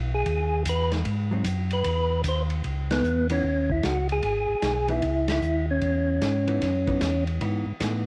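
Late-night and smoky, this short soul jazz organ trio excerpt swings at 151 BPM in C# minor, as a round, mellow tonewheel organ bass with key click and a percussive third-harmonic organ melody, both up front through slow rotary speakers, open with an organ solo before a muffled, lo-fi vintage drum kit with dark cymbals and a tight kick joins, then a clean, compressed hollow-body jazz guitar adds picked accompaniment from 1.3 seconds, with band accents at 2.8 and 5.2 seconds over light reverb and studio ambience.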